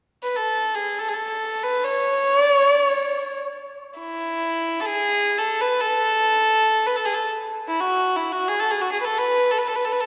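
A single bowed violin carries this short fragment of Turkish music, entering at 0.2 seconds and playing alone until it ends at 10.1 seconds. Its tone is pure and floating, with a soft attack and an airy bow that give each phrase a gentle onset, though a slightly boxy color shows through at its core. The solo line stays within a modest register from E4 to C#5 and sits up front, close to the listener. Around it, a wet church reverb with a long tail of 3.1 seconds suggests a large hall or sanctuary. The mood is stately yet passionate.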